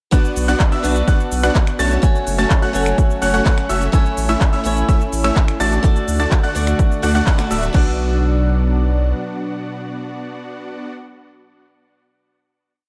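Powerful and anthemic, this festival progressive house piece opens straight into a drop in which a punchy four-on-the-floor electronic kick and an overdriven big-room kit of crisp hi-hats, handclaps, finger snaps, cabasa and crash drive a deep, saturated off-beat sub bass. Above them, a bright, detuned supersaw stab plays a rhythmic chord riff with cassette grit and tape echo, while a boxy picked acoustic guitar adds held swing chords with syncopated pushes. A warm grand piano arpeggiates high above, a lush chorused pad sits in the background, and after a band accent at 7.3 seconds the drums drop out at 7.8 seconds, leaving the pumping melodic parts to ring out on a final chord.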